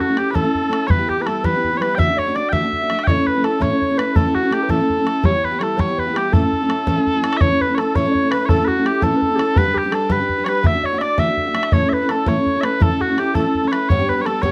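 Mellow, sweet small bagpipes carry the melody up front with a continuous, vibrato-touched tone in this rollicking, cheerful Celtic jig, taken from a longer piece, in A mixolydian at 111 BPM in 6/8. A pure, crisp-attacked baroque flute with a straight, woody tone adds a close second line, while a picked steel-string dreadnought guitar gives warm accompaniment and a boomy, dry bodhran drives the percussion. The tune plays through twice over chords moving among A, Em, Dadd9 and G, set in a moderate small-room reverb.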